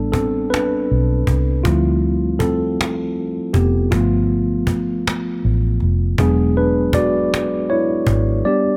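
Sultry and late-night, this slow six-eight R&B excerpt moves at 53 BPM, with a mellow tine electric piano taking the lead across its full 8.8 seconds over extended chords from A9sus4 through Dm11 and G9 to E9. A dark, round, foam-muted fingered electric bass gives punchy, amped support, while a woody cajon with faint snares sounds compressed and saturated. All three parts sit up front in a dry, close mix, the piano clean and direct.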